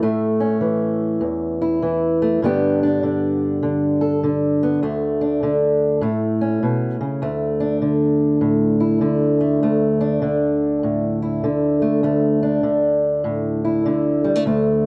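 Swung eighth notes at 100 BPM in 4/4 drive this gritty, swaggering blues, cut from a longer piece and carried by a single fingerpicked old ladder-braced acoustic guitar that sits up front from D2 to A4. The guitar's boxy, dusky tone moves through A, G, D5 and A chords before landing on D5 as a second section begins at 7.2 seconds, and it plays to 14.9 seconds. Light reverb and a dark, warm production round out the sound.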